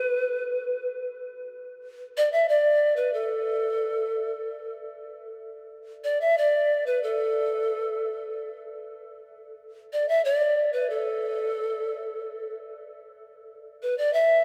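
A vast, echoing space surrounds this recording, its wet cathedral reverb letting each note hang with a decay of about 6.3 seconds. It is a melancholic, earthy piece of Andean folk at 93 BPM in a straight 3/4, tuned slightly sharp to A4 = 441 Hz, and cut from a longer work. A single polished pan flute plays solo throughout, moving between A4 and E5, with a woody, pure tone, vibrato and lifted highs. Its tongued attacks carry a chiff, and the flute sits up front against the cavernous room. After a short opening phrase, the music shifts into a new section at 1.2 seconds that carries on to the close at 14.4 seconds.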